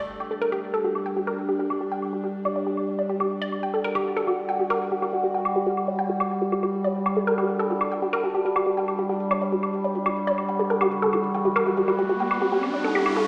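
Hypnotic and alien, this psychedelic trance excerpt at 140 BPM sets a nasal, resonant drone with moving overtones holding sustained chords under an up-front woody, wave-folded pluck riff ringing through chorus and dub echo, while filtered, tape-tinged electronic hi-hat and woodblock tick beneath and an electronic riser enters at 11.1 seconds, all washed in a lush hall reverb and the stone echo of a bare room.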